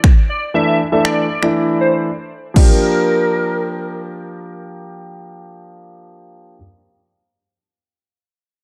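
A punchy analog drum machine of kick, finger snaps and crash cymbal drives this confident dance-pop excerpt in G dorian at 119 BPM until 2.7 s, while an airy, detuned lead with chorus, delay and sidechain pumping floats over a clear, intimate concert grand piano that carries the Dsus2-to-Gm7 change through to 6.6 s, set in a dark production with light digital reverb.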